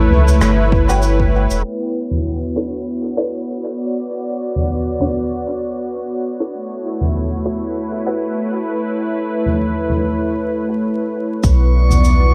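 Ambient dub in B minor at 98 BPM, this deep, meditative passage, cut from a longer piece, moves in 4/4 with a gentle swing on the sixteenths. A smooth, detuned sawtooth pad carries sustained chords with a soft attack, long release and chorus, sitting up front through A9, Bm11, A69 and Bmadd9. A round sine sub bass and an overdriven, layered electronic kick appear only at the opening and again from 11.4 seconds. A soft-mallet kit of cabasa, rim click and low-pass filtered toms plays throughout, while a muted, mellow chord stab with phaser, ensemble chorus and dub echo decays in the background, its moving notch giving it an evolving character. A filter sweep runs through the long middle stretch, and at 11.6 seconds a glassy texture of drifting sine overtones enters with a slow attack, bathed in chorus and its own reverb. Light small-room ambience and a hush of vinyl crackle wrap the whole in a dusty, low-passed haze.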